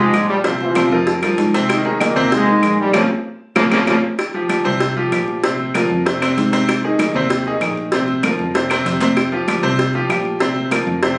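A bright, up-front trombone section carries the melody with light vibrato for the first 4.0 seconds of this driving, danceable salsa excerpt at 193 BPM, over a clear, worn baby grand piano with audible action noise, a dark, round fingered electric bass, woody claves, a tight cowbell and thin-skinned congas in the background, all heard through a phone-in-the-room recording with moderate studio reverb.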